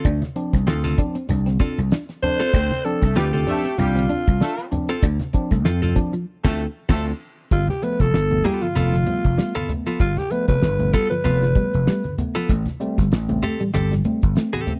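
A breathy, raspy alto saxophone carries the melody up front from 2.2 to 12.1 seconds in this cool, funky excerpt at 96 BPM in D dorian, with a lightly swung sixteenth feel, while a distant, roomy horn section adds a tight second line until 7.1 seconds. Underneath, a growly, punchy slap bass and a cloth-damped, thuddy drum kit with a fat snare and dark cymbals drive the groove, joined by a compressed clean electric guitar, a hollow-body semi-hollow guitar playing a riff in the background through ensemble chorus, a worn, slightly out-of-tune tine electric piano playing mellow stabs, low-tuned congas and a grainy tube shaker. The harmony moves from Dm7 to G9 and Am7, with a band accent leading into the second section, captured as a dry, close 1970s-style studio recording in a small room.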